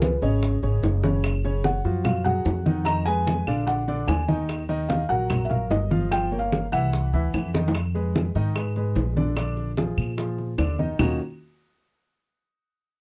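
A sultry, driving Afro-Cuban jazz excerpt in Eb minor at 148 BPM opens with a dark, felt-muted upright piano carrying the melody with audible action noise over an up-front baby grand's chords, a woody pizzicato upright bass, low-tuned thick-skinned congas and tight high-tuned bongos, with distant claves joining at 1.2 seconds, drum fills at 1.0 and 7.5 seconds, and the muted melody stopping at 7.5 seconds as the dry, close 1970s-style sound moves through Fm7b5 and Bb7 toward a closing Ebm9.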